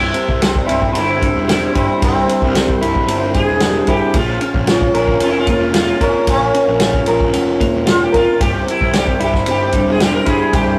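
A rough rehearsal-room sound with moderate studio reverb frames this trippy, hypnotic psychedelic rock excerpt in C phrygian dominant, moving straight at 113 BPM in 4/4 from C to Bbm7 at 4.1 seconds and back to C at 8.4 seconds. Up front, a slightly broken-up, lo-fi electric guitar through a small old amp plays a picked riff with phaser, beside a vintage drum kit with a tight kick, medium-tuned snare, ride cymbal and rolled-off top. A buzzing, shimmering sitar carries the melody through tape echo over a round, punchy fuzz bass with overdrive, while a mellow sawtooth string machine cello patch holds soft-attack chords with ensemble chorus in the background.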